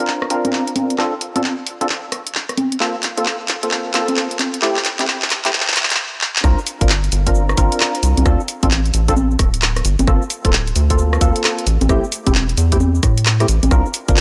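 Bouncy and moody, this two-step garage excerpt at 132 BPM swings its 16ths as a mellow, hollow organ stab with ensemble chorus and analog delay rides a filter sweep through a build-up of drum fills from cabasa, congas, handclaps, rim click and warm hats, pausing in a stop at 6.0 seconds. At 6.4 seconds the drop lands with a tight electronic kick and an up-front, rubbery square bass whose dark, resonant filter pluck moves beneath chords like C9sus4, Dm7, Gm11 and Am7. The dry, gritty hardware sound sits in light digital ambience.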